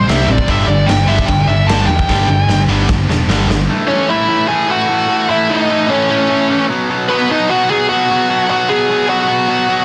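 Energetic and upbeat, this punk rock fragment at 150 BPM opens with a dark, distorted bluesy lead guitar soloing up front over an up-front overdriven riff guitar, a tight distorted guitar in the background, a very quiet, scooped, double-tracked distorted guitar, a growly, punchy overdriven picked bass and a gritty, saturated garage drum kit with a punchy kick and a medium-tuned snare that plays a fill from 2.1 seconds, before the bass and drums drop out at 3.6 seconds and the lead and the up-front riff guitar carry on alone through the shift from G to A and then to B5, all under light reverb and a dense, heavily limited modern master.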